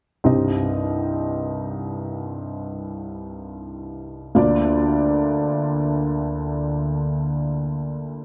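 A dark, woody upright piano sounds worn and slightly detuned, its action noise audible and its place intimate and up front within a moderate scoring-stage reverb, as it plays a heartbroken, longing pop accompaniment in free time in C minor, moving from Cm to Bb/D at 4.4 seconds in this short excerpt from a longer piece.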